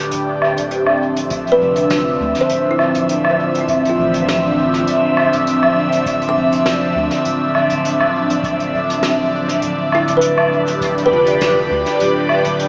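A lightly swung 4/4 groove at 101 BPM opens this ambient dub excerpt, carried by a jazz brush kit whose hi-hat, high-tuned snare and woodblock are thrown into dub echo, while a deep, tape-warm electronic kick sits in the background from 1.3 to 10.9 seconds. In D dorian, the mood is spacious and hazy, built on an up-front pad that is airy and breathy, with a detuned sawtooth edge and a noise layer, sustaining long chords through chorus and phaser. Beneath it, a soft, round sub bass with tube saturation holds the low end quietly. At 1.5 seconds a woody, hollow-bodied kalimba joins with ringing thumbnail-plucked arpeggios, sitting mid-forward in the mix and trailed by tape echo. The harmony rests on Dm9 before moving to G/D at 9.6 seconds. A wet concert hall reverb, vinyl crackle and a small-speaker tone lend the whole piece a dusty, distant glow.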